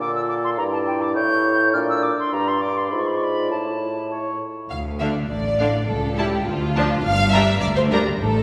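Heard through a wet church reverb, this stormy, dramatic fragment of a quick classical-period orchestral movement in D minor moves at 103 BPM in a straight 2/4. For the first 4.4 seconds the woodwinds carry it alone: a pure, crisp-attacked silver flute sits up front high above a mellow, vintage clarinet and a distant, roomy oboe, while a bassoon with light vibrato grounds the harmony. At 4.7 seconds the strings take over, with an up-front violin section and focused cellos and double basses joined by a dark, portamento-inflected violin melody in the background and an intense, distant viola section.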